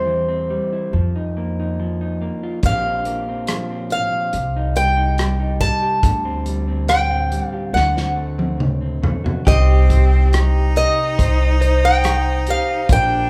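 A boxy, picked acoustic archtop guitar carries the melody up front in this intimate, melancholic folk-pop ballad at 70 BPM, over a slightly broken-up electric guitar through a small old amp, a woody, thumpy pizzicato upright bass, and a dark, smooth country drum kit that enters at 2.6 seconds, before a bright bowed cello with light vibrato and a clean, direct-recorded electric guitar playing tremolo arpeggios join at 9.5 seconds, all set in a moderate studio reverb with the band playing live in one room.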